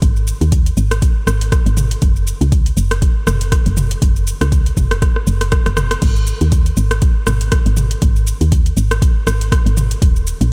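Afro house at 120 BPM with a 16th-note swing and a spiritual, warm mood, built on a soft, woody FM bass with sidechain pumping alongside an up-front, deep electronic kick, while a layered deep house kit of metallic hi-hats, rim clicks, shaker, toms and crash plays a drum fill from 5.0 to 6.0 seconds in this short cut from a longer piece.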